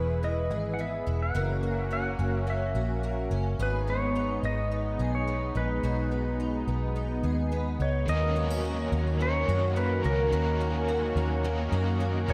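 This dream pop excerpt, cut from a longer piece, drifts along in a straight four-beat feel with a blissful, ethereal mood, the whole mix soaked in a wet plate reverb. A clean, twangy lap steel guitar carries the melody with slide and volume swells, trailed by delay. Beneath it, a lush, detuned sawtooth pad holds thick, nasal chords with a slow attack and long release, while a picked twelve-string acoustic guitar adds shimmering, octave-doubled arpeggios with a boxy tone, a touch of swing and audible finger squeak. A dark, round, foam-muted electric bass sits up front with a punchy presence. At 8.1 seconds, as the harmony moves from E, F#, G#m and B6 to D#m7, a double-tracked, overdriven guitar enters with crunchy accompaniment colored by tremolo and analog chorus.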